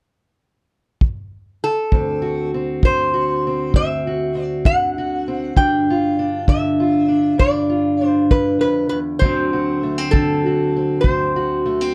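Acoustic country blues with a rollicking, swaggering mood, moving at 66 BPM in 12/8 in D mixolydian, cut from a longer piece. A tight, smooth kick drum played with brushes starts at 1.0 seconds. A bright, nasal metal-body resonator slide guitar joins at 1.6 seconds to carry the melody, and a boxy, fingerpicked parlour steel-string acoustic guitar enters at 1.9 seconds, comping through D7 and G5 changes beneath it, all under a dark production with light reverb.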